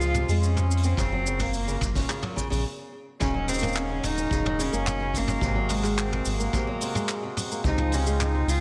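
A distant, gut-toned bowed cello sings a wistful melody through tape echo over breathing, reedy harmonium chords, fingerpicked flamenco guitar arpeggios with finger squeak, 12-bit sampler grit and echo, a round, deep analog bass up front, and a warm, rolled-off brush kit of cabasa, handclaps, hi-hat and toms, all opening this delicate, straight 108 BPM folktronica cut in Eb dorian, with a punchy kick entering at 1.0 seconds, a brief stop at 2.6 seconds, and light reverb framing the studio room.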